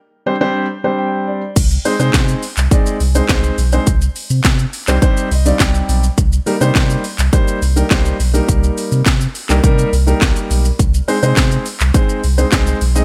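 A digital ambience wraps this energetic, confident dance-pop passage, cut from a longer piece and moving at 104 BPM in a straight 4/4. A concert grand piano with a deep low end sits up front and opens the break on Gsus4 at 0.3 s, adding fills before a round, sine-like sub bass and a punchy, layered house kit (cracking snare, metallic hats, handclaps, shaker and crash, tape-warm and re-recorded in a small room) arrive together at 1.6 s. Piano and bass both carry sidechain pumping as the harmony moves through Ab/C, Cm and Eb, with another piano fill at 5.0 s.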